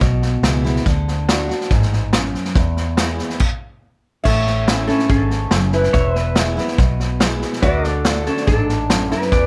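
An easygoing, nostalgic slice of honky-tonk and classic country, cut from a longer piece, rides on a straight, steady feel. A full-bodied dreadnought acoustic guitar picks the accompaniment, while a round, foam-muted vintage electric bass adds dark, punchy low end. Up front sits a vintage drum kit with a punchy kick, a medium-tuned snare, hi-hat and crash, its dark cymbals and rolled-off top giving it an old studio-room character. The band breaks for a stop at 3.4 seconds, and at 4.2 seconds a lap resonator guitar takes a slide solo played with a steel bar and fingerpicks, its tone metallic and nasal. Just behind it, a clean, compressed pedal steel guitar adds twangy sustained chords with volume swells, all set in light reverb.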